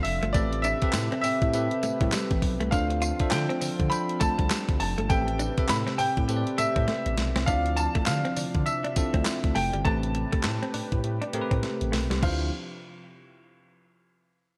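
Slick and punchy, this brief new jack swing R&B cut pairs a clear, intimate grand piano melody with bell-like tine electric piano, a mellow detuned analog pad in the background, a gliding sawtooth synth bass with portamento, a picked clean electric guitar riff entering at 0.2 seconds, and a crisp, up-front 8-bit drum machine with thumpy kick, handclaps and tambourine, all set in a lush hall and bright 1980s-style digital production, with drum fills at 6.9 and 11.6 seconds and a filter sweep from 7.5 seconds.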